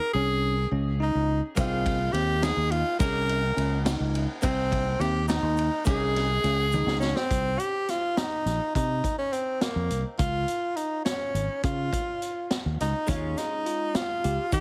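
A heavily compressed, radio-like sound with light reverb frames this brooding, tense progressive instrumental, a short cut from a longer piece moving in an uneven 5/8 at 208 BPM counted in eighths, straight and centred on C phrygian. Up front, a breathy tenor saxophone carries the melody with clear pop-style vibrato and an analog delay trailing its lines, while a fingered electric bass, round, dark and punchy, holds down the low end beside it. Behind them, a bell-like tine electric piano spins bright, clean arpeggios through its own analog delay, and a double-tracked archtop guitar, hollow and picked, adds compressed accompaniment from the background. A vintage drum kit enters at 1.6 seconds with a high-tuned snare, punchy kick and dark, rolled-off cymbals, joined by a grainy, distant egg shaker. After a drum fill closes the opening passage at 7.3 seconds, the piano, guitar and shaker drop away over Cm and Db harmony, returning at 13.1 seconds as the Eb7sus4 comes back around.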